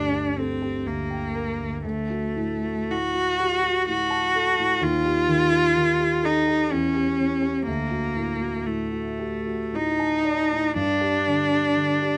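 This classical, romantic duo for cello and grand piano has a solemn, melancholic mood and moves slowly at 54-64 BPM in 3/4, with a rubato feel and tuning set to A4 = 438 Hz. The bowed cello carries the melody from 0.0 to 12.2 seconds between A3 and F#4. Its clear, smooth tone with vibrato sits close and up front, played evenly by one player. A dark, mellow concert grand piano accompanies throughout, spanning G1 to A5 and lending the sound a deep bass. The harmony moves from G minor through D, E-flat add nine and E minor six before returning to D and settling on a bare G fifth near 10.8 seconds. Light reverb surrounds this brief excerpt, cut from a longer piece.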